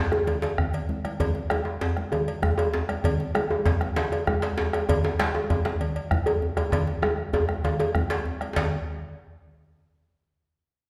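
A 12/8 groove at 130 BPM with a straight feel drives this earthy, festive West African traditional drum ensemble, cut from a longer piece. A round bombo anchors it, joined by bright, thin-skinned congas, a deep djembe in the background, and a tight, cracking, band-limited djembe struck with hard hands up front, while a metallic, dry cowbell enters at 0.3 seconds. Drum fills break out early and again from 6.7 seconds, and the whole ensemble sits in a reverberant recital hall before a brief new section begins at 8.6 seconds.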